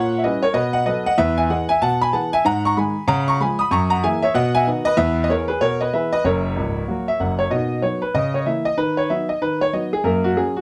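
A clear concert grand piano plays solo from the first moment, an up-front stride jazz performance at a brisk 190 BPM in B major with a playful, exuberant swing, tuned slightly low to A4 = 436 Hz. Its deep bass sits beneath an open upper register spanning C#1 to D#6, moving through a diminished opening into B7, E, G#m, C#7 and F#9 before a new passage arrives at 7.5 seconds and settles toward F# by 10.0 seconds. Light reverb and a dark production frame this short excerpt, which is cut from a longer piece.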